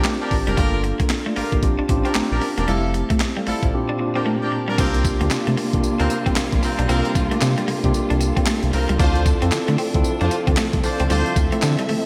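Bright, 1980s-style digital production with a lush hall reverb frames this bouncy, punchy new jack swing cut from a longer R&B piece, its swung sixteenths driven by an up-front, gritty sampler-style breakbeat kit with a thumpy kick, high-tuned snare, handclaps, tambourine, hi-hat and crash, all treated with gated reverb. A round, deep analog bass anchors the low end and a mellow tine electric piano carries the chords, while a slightly broken-up electric guitar picks a compressed riff with subtle chorus and a distant, roomy horn section adds jazz-style stabs through digital delay. At 4.8 s an expressive studio string section with vibrato and portamento enters in the background, holding sustained chords.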